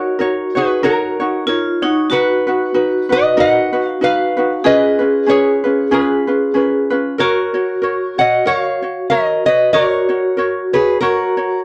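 A lap resonator guitar carries the melody up front, played with fingerpicks and a slide, its tone metallic and nasal as it moves between F#4 and F#5. This languid, dreamy Hawaiian excerpt sits at 94 BPM in 4/4 with a gentle swing on the eighth notes, in F# major. Beneath the guitar, a vibraphone struck with hard mallets adds a bright, ringing second line in a narrow range, shimmering with fast motor vibrato. A light, fingerpicked ukulele, also close and present, supplies the accompaniment through a progression of D#m7, Bmaj7, C#7 and F#maj7. The sound is dry and close in a 1970s studio style, touched by a moderate small-room reverb, and the 11.6-second passage is cut from a longer piece.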